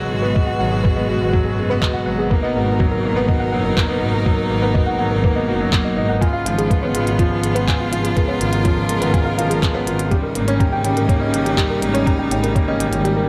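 A clear, up-front concert grand piano plays a delayed riff over bowed string-quartet chords, a round, dark synth pluck arpeggiating in the background, a bowed double bass section and a muffled, thumpy electronic kick, while a clicky, overdriven kit with handclaps and hi-hat joins at 1.8 seconds in this cinematic, hypnotic piano-and-strings electronica excerpt at 123 BPM, moving from G#m7 through Bmaj7, C#7/G# and D#7/G# as sidechain pumping breathes through the strings, pluck and bass.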